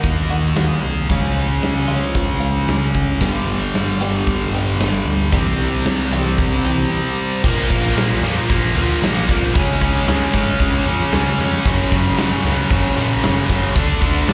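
Heard through a club PA in a small, reverberant room, this cathartic, anthemic quiet-loud alternative rock excerpt drives an up-front scooped high-gain guitar riff and a huge, punchy arena drum kit with bright cymbals over a growling, overdriven picked bass, while a twangy, chorused twelve-string electric guitar plays arpeggios in the background until 7.0 seconds and a compressed fuzz guitar riff with slapback echo joins at 3.2 seconds.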